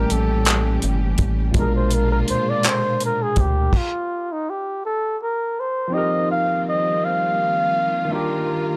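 A dry, gritty recording catches a sultry, yearning slow R&B groove in 6/8 at 55 BPM, where a breathy, close-miked flugelhorn plays an up-front jazz-style solo with vibrato and scooped notes over a barky, lightly overdriven tine electric piano with lush chorus and a rich, distant bowed string section. A rubbery, hollow square bass with transformer saturation and a damped 70s kit with a tight kick, handclaps and a rolled-off top drive the opening until about 3.9 seconds. The band then stops and the flugelhorn carries on with the piano and strings until the harmony shifts at 5.9 seconds.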